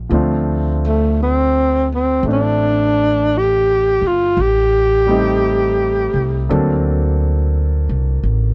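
Wistful and melancholic, this short jazz ballad moves at an unhurried swing in four. A breathy tenor saxophone carries the melody up front from 0.9 to 6.5 seconds, its dark, whispered subtone shaded with vibrato, soft attacks and scooped notes that give it an intimate, smooth-topped voice. Beneath it, a pizzicato upright bass sounds woody and close, while a natural-toned baby grand piano supplies accompaniment further back, both playing throughout. The harmony drifts from Dm7 to Am7b5 before settling on a tense D7b13. The recording has the dry, close feel of a 1970s studio session with a light touch of reverb, and this brief section is cut from a longer piece.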